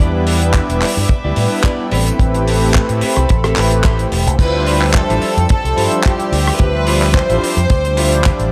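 A bright, amped fingered electric bass with an envelope filter and tube saturation sits up front with a tight, dry kick in this groovy, cosmic nu-disco excerpt at 109 BPM in D dorian, joined by a damped 70s drum kit with dark cymbals, handclaps and rim clicks, a detuned sawtooth analog pad, a floating string section with sidechain pumping, and a clean picked electric guitar riff in the background carrying 12-bit sampler grit and a fill from 3.6 seconds. The harmony moves from Em7 to Am9, and then a clear, earthy violin section with light vibrato and tape echo takes the melody at the drop at 4.4 seconds over a Dm11 chord, all in a small, lightly reverberant room.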